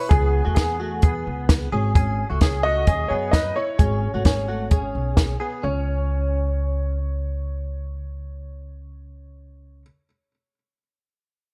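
A dry, compact cocktail drum kit sits up front with a punchy kick and high-tuned snare, driving this restless, wistful jangly indie pop fragment at 130 BPM in 4/4 before dropping out at 5.3 s. A pizzicato upright bass with a woody, steel-string tone holds down the low end, while a bright, twangy, direct-recorded clean electric guitar plays picked, compressed arpeggios through ensemble chorus until 7.0 s. An intimate, slightly detuned upright piano carries the melody with audible action noise and digital delay over a move from C#m7 to G#7sus4, until the harmony falls away at 5.6 s, set in a dark, warm studio ambience.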